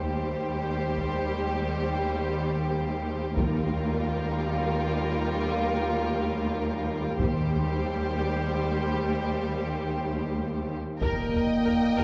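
This cinematic, epic orchestral cue, cut from a longer piece, opens on a lush string section: warm, vibrato-rich violins carry the melody over a second violin line, while clear violas fill in the accompaniment. Dark, expressive cellos sit up front on the bass, and a rich, distant double bass section surfaces only in brief moments beneath them. From 1.0 seconds a taiko ensemble joins in the background, its heavy sticks sounding close and dry against the rest of the orchestra. The passage builds toward 11.0 seconds, where a roomy French horn section and vintage-toned trombones arrive with sustained chords, crowned by a huge, bright impact. The whole scene sits in a recital hall's generous reverb, heard from further back in the room, giving the music a triumphant, majestic sweep.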